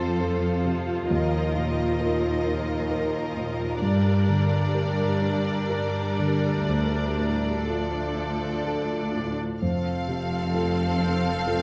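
This excerpt from a cinematic film score opens with a grand piano, violin, viola and cello sections sounding together in an unhurried, rubato 3/4 at roughly 59-67 BPM, the mood moving and hopeful. The piano's warm tone carries the accompaniment alongside a rich, even viola section, while a focused violin section with a smooth top plays a second line and a distant-sounding cello section holds the bass with vibrato. The harmony moves from F through Ebsus2 and Gm to Dm before returning to F at 9.6 seconds. At that moment a lush, expressive violin section enters on a high melody note, and a double bass section joins beneath with a soft attack and gliding portamento. A moderate recital hall reverb gives the orchestra an open, spacious setting through to the close at 11.6 seconds.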